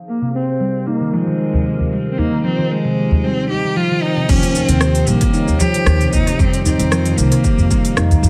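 Meditative and warm, this short cut from a longer organic downtempo piece moves at 114 BPM in 4/4 with a light sixteenth-note swing. A warbling, lo-fi pad with chorus and its own reverb holds sustained chords in the background, while a handpan plays ringing, mellow arpeggios up front with dub echo, struck with soft fingertips. A clear, focused cello carries the bowed melody with vibrato and tape echo, and a close, dry udu adds deep percussion from 1.5 seconds. At 4.3 seconds the second section brings in a woody, thumpy pizzicato upright bass, a deep electronic kick, and an organic electronic kit of crisp hats, cabasa, crash and rim click, softened by low-pass filtering and dub echo. A filter sweep runs through the opening 4.3 seconds, and the echo-heavy mix sits in a small, lightly reverberant room as the harmony moves from Ab69/C and Abmaj7 to Eb7 and F5.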